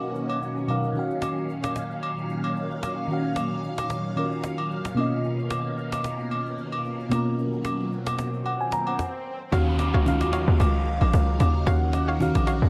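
Heard through light digital reverb with lossy artefacts, this hypnotic, soulful amapiano piece rides a swung groove as a round, dark FM electric piano and a swirling, vintage phased string machine carry the chords over soft, woody cajon and band-limited agogo bells, until an electronic swell and downlifter enter at 7.9 s and the drop at 9.5 s brings in a bouncy, up-front log drum bass and a nasal, detuned square pluck in the background.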